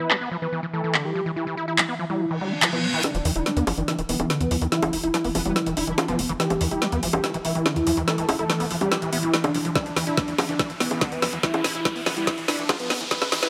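A straight 4/4 pulse drives this hypnotic, alien stretch of psychedelic trance, cut from a longer piece. From the outset an up-front, overdriven kit of woody snare, bright hats, handclaps and bongos sits beside a squelchy, gritty acid bass riff run through distortion and tape echo, with a filter sweep over it. A thick, detuned unison lead carries the dark melody through phaser and tape echo, while a swarming, granular drone holds tense sustained chords in the background. Both are pumped by sidechain along with the acid bass. At 2.4 seconds a reverse cymbal and riser lead into a long build-up with a drum fill and sweeping filters on the drone. A tight, punchy, wave-folded sequencer bass joins at 3.1 seconds, a very quiet metallic wobble bass surfaces in brief bursts, and a knocking, overdriven electronic kick arrives at 9.8 seconds, all bathed in a lush hall reverb.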